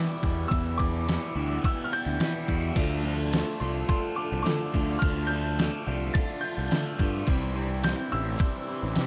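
Dry and close in a 1970s studio manner, this restless, moody indie rock fragment moves at 106 BPM in 4/4 in D dorian, over the chords Em7, Dm and Cadd9. A thumpy, up-front 8-bit drum machine with a medium-tuned snare, crash and ride enters at 0.2 seconds alongside a punchy fuzz bass, a compressed, phaser-treated overdriven guitar riff, and a woody upright piano melody with audible action noise and tape echo, while a flute-like tonewheel organ holds soft chords through a slow rotary speaker. At 2.8 seconds a dark, slightly broken-up second guitar joins in the background with chorus and tape echo.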